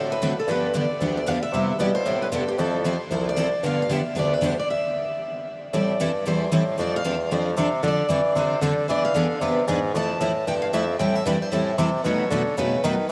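Lively and playful, this fragment of acoustic string swing sets a fresh-stringed, boxy picked steel-string guitar melody bathed in diffuse ambient delay over two chorused picked steel-string guitars, one a full-bodied jumbo up front and the other a bright parlour guitar in the background, while a clear, punchy bassoon with light vibrato carries the bass line in a classical style; the music breaks for a stop from 4.7 to 5.7 seconds before the next section begins, all inside a huge, dreamy reverb.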